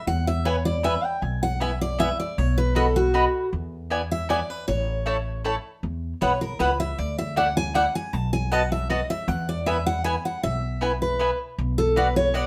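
Bluegrass in a joyful, virtuosic 3/4 at 156 BPM, where a bright, full-bodied picked steel-string acoustic guitar solos up front throughout over a woody pizzicato upright bass, while a double-strung mandolin adds picked stabs, all in a moderate studio reverb as the same section repeats from 5.8 seconds, moving through chords such as E, B, E7, A, Dadd9, B7 and Bm.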